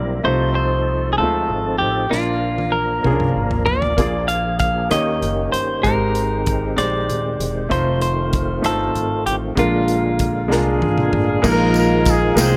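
Lightly reverberant in a small room, this jubilant, uplifting slow gospel excerpt at 64 BPM in 6/8 sets an up-front, clean, picked electric guitar melody over brilliant upright piano, a lightly overdriven tonewheel organ with slow rotary speaker and key click, and woody, thumpy pizzicato upright bass; a polished acoustic drum kit with punchy kick enters on a fill at 2.1 s, a tight, vintage horn section takes the melody at 10.5 s, and jingly tambourine joins at 11.4 s as the chords move from F7/C through Bb7, Eb7 and Abmaj7 to a closing Bb7sus4.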